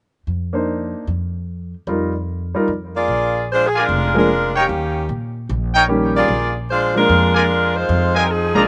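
A woody, pizzicato upright bass opens this energetic big band swing cut at 0.3 s, joined at once by a natural-sounding baby grand piano comping over a 150 BPM swing feel in Bb mixolydian, moving through chords like Cm9 and F9sus4. At 3.0 s a bright, smooth-topped saxophone section takes the melody, and from 3.7 s a clear, vintage trumpet section adds soft-attacked stabs with vibrato, both horn sections carrying a slapback echo. The dry outdoor sound keeps every part up front with little reverb and a mellow, rolled-off top.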